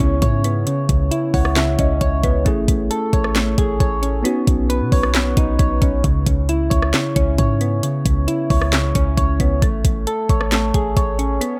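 A worn, slightly out-of-tune tine electric piano, soft, round synth keys arpeggiating through chorus and tape echo, a deep, boomy 808-style bass and an up-front trap kit with knocking kick, sharp snare, bright hats, handclaps and rim clicks open together on this dark, melancholic half-time trap beat at 134 BPM in C# minor, which moves through C#m7, Amaj7 and Badd9, with the electric piano adding a fill at 1.1 seconds before dropping out at 6.1 seconds and a faint electronic swell arriving at 11.5 seconds in this echo-heavy, lightly reverberant excerpt cut from a longer piece.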